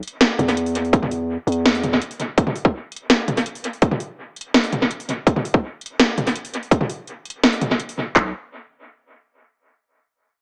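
A half-time 4/4 pulse at 166 BPM drives this heavy, tense half-time drum and bass piece. An electronic, layered drum kit with a cracking snare, metallic hi-hats and toms carries a dub echo from the start, and a trap kit of overdriven handclaps and a hard-clipped kick joins at 0.9 seconds and sits loudest. A deep, sine-toned 808-style bass with a fast attack decays beneath them from 0.4 seconds. The whole is set in a moderate plate reverb with an echo-heavy, small-speaker sound.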